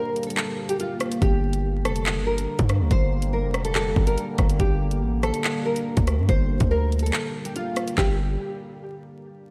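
A fingerpicked nylon-string guitar opens this menacing, tense drill cut, carrying a deep classical melody over a Gm chord with finger squeak audible, thickened by analog chorus and delay. Beneath it, a deep, moody ambient pad holds sustained chords, its detuned sawtooth and sine layers with a sub octave slowly evolving through chorus and built-in reverb. The drill drum kit arrives at 0.2 seconds at 142 BPM in a half-time 4/4 feel, with a knocking kick, woody snare, bright hats, rim clicks and handclaps, all pushed up front with overdrive. At 1.2 seconds a hard-hitting 808-style bass drops in, punchy and heavy, its sine tone with a noise layer striking fast and decaying. The G minor mix is dreamy and soaked in a lush hall reverb, with vinyl crackle lending a dusty, nocturnal grain.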